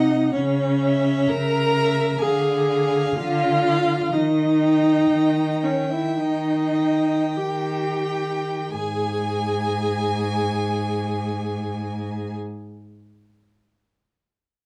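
A bowed viola sits up front in this melancholic, yearning passage for string quartet, carrying a rich, focused accompaniment with vibrato that is the most prominent voice in the texture. Above it, one violin sings the melody in a smooth, even, slightly distant tone, while a second violin adds a focused second line. Beneath them, an expressive solo cello supplies the bass, also up front, with vibrato and portamento. The rubato pulse slows through the opening section, moving through C#m, Ddim and D# before the harmony falls away at 8.7 s, and the four players continue together until 12.3 s. Light reverb and a dark, warm production give this excerpt from a longer slow romantic movement a hushed, inward glow.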